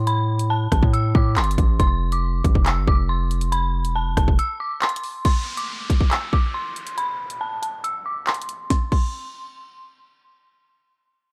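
Tense and dark, this drill cut from a longer hip hop piece moves at 139 BPM in 4/4 with a half-time feel. An eerie, detuned FM synth bell carries the melody high up, its inharmonic, full-bodied tone softened by chorus and a low-pass filter over chords that move from Am to F5. Beneath it, a distorted 808-style bass with a noise layer hits heavy and saturated until 4.4 seconds, when a short break clears space. The electronic drill kit sits up front with a hard-clipped kick, sharp snare, bright hats, handclaps, rim clicks and a crash cymbal, playing until 9.0 seconds. From 5.2 seconds the harmony drops away as a filter sweep moves across the bell and a faint downlifter falls underneath, before the bell carries on past the drums until 10.0 seconds. The production is dark, warm and digital, with the parts placed up front.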